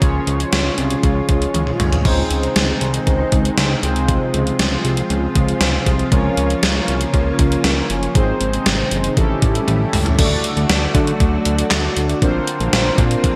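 Upbeat and bright, this synth-pop excerpt moves at 118 BPM in Db major, with a gated 80s digital drum machine up front, its thumpy kick and gated-reverb snare joined by hi-hat, handclaps, toms and crash, with fills at 1.5 and 9.7 seconds. A fat, detuned sawtooth bass with a saturated filter pluck anchors the harmony, while brassy, wave-folded analog synth brass with chorus, vibrato and shimmer reverb carries the accompaniment over a silky, soft string machine sitting in the background with ensemble chorus. The bright 1980s-style digital production passes through an A7 and shifts at 10.2 seconds into a new section that moves from D to Bbadd9.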